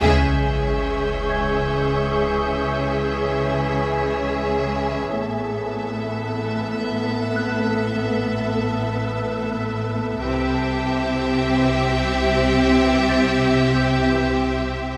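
An electronic sub drop lands with the opening accent as lush bowed strings begin this tense, ominous suspense cue from a film score: violins carry a focused, vibrato-laden melody over an expressive second violin line, with violas filling the middle while cellos and a dark, gliding double bass section anchor the bass beneath. Mellow French horns sustain chords in the background, while a breathy, wind-like tuned noise layer with its own reverb enters at 0.4 seconds and drifts over chords moving from C#m through Asus2 to C. A delicate, bell-like celesta and a clear high violin section glint faintly on top, the violins falling away at 4.8 seconds and returning at 10.2 seconds, all set in a moderate scoring-stage reverb.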